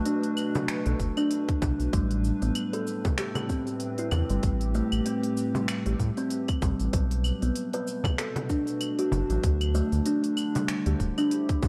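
A woody, ringing kalimba sits up front with mellow arpeggios and a digital delay in this hypnotic, mystical slice of organic downtempo, moving over a swung 16th-note feel through Bm7, Am9 and D9sus4. A warbling, nostalgic tape-like pad holds sustained chords beneath it, softened by chorus, phaser, built-in reverb and sidechain pumping. A round, deep analog bass enters at 0.9 s with its own pumping, joined at 1.0 s by a tight, tape-tinged electronic kick, while a crisp-hatted electronic kit of cabasa, claves and finger snaps and a small, bright frame drum in the background fill out a dark, warm mix set in a moderate echo-chamber reverb.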